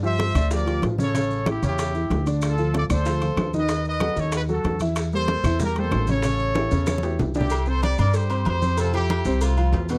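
Driving salsa rhythm at 189 BPM in a straight 4/4 sets a danceable pulse, with a woody, pizzicato upright bass up front and a present, polished upright piano with short sustain comping through chords that move from Gm11 toward F, as a tight, smooth-topped trumpet section carries the melody. Behind them sit damped, low-tuned congas, tight high-tuned bongos and cowbell, ringing metal-shell timbales with agogo bells, and grainy, distant maracas, while very quiet claves come in at 2.4 s. A drum fill at 6.6 s leads into a new section at 7.5 s, all in a dry, close 1970s-style studio sound with light reverb, cut from a longer piece.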